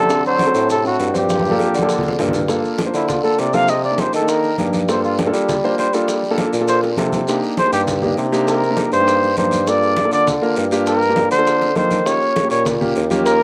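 A straight 4/4 groove at 200 BPM drives this fiery, sophisticated Afro-Cuban jazz excerpt in G minor, built from ringing, hard-hand congas, tight high-tuned bongos kept very quiet, a raspy, saturated guiro and grainy, vintage maracas, with short drum fills punctuating the flow. A mellow, close-miked bassoon plays the bass line in a classical style with light vibrato, while a warm concert grand piano comps with an intimate, natural tone, deep bass, long sustain and audible action noise, touched by slapback echo. A dark, breathy trumpet carries the melody up front, with vibrato, scooped notes and a smooth top, and from 2.5 s it takes a jazz solo through to the end. At the start a bright, punchy trombone adds a forceful second line from a distant, roomy place in the background, dropping out at 2.2 s; both horns carry slapback echo. The harmony moves from D7 into Gm7 and works between Gm7 and Cm7 before landing on Eb7, all in a dry open-air sound with little reverb.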